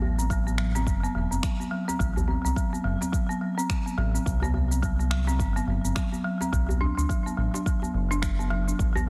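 Organic downtempo with an earthy, mystical mood, cut from a longer piece and set in 4/4 with a swung sixteenth-note feel. A folk marimba played with medium hard mallets carries arpeggios up front, its woody, rustic hardwood bars sounding dry at the source and trailed by a digital delay. Beneath it, a smooth gliding synth bass blends sawtooth and triangle tones with a moving notch, vibrato and portamento, its mellow sustained notes pumping against the sidechain. A djembe sits in the background with tight, cracking soft-hand strokes, joined at 0.2 seconds by layered electronic cabasa and finger snaps, the snare edged with soft clipping, and a deep, produced electronic kick drum from 0.3 seconds. The harmony moves from Am69 to C5 and then Bm, framed by light reverb and small room ambience in a dense, heavily limited modern master.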